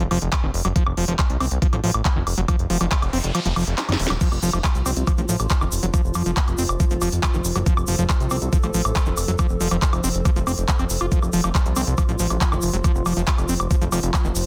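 A squelchy, distorted acid bass riff with dub echo and sidechain pumping opens this hypnotic psychedelic trance excerpt at 139 BPM in F major. It rides over a fat, detuned sawtooth bass, a tape-warm techno kit of cracking snare, smooth hats, handclaps, woodblock and crash, and an overdriven, knocking electronic kick up front. A background noise sweep arrives, then the kick briefly drops out, and a drum fill leads at 4.2 seconds into a grainy, close egg shaker and then, at 4.8 seconds, a mellow, morphing wavetable pad with chorus, reverb, 12-bit sampler grit and pumping, holding sustained chords behind the dense, heavily limited master.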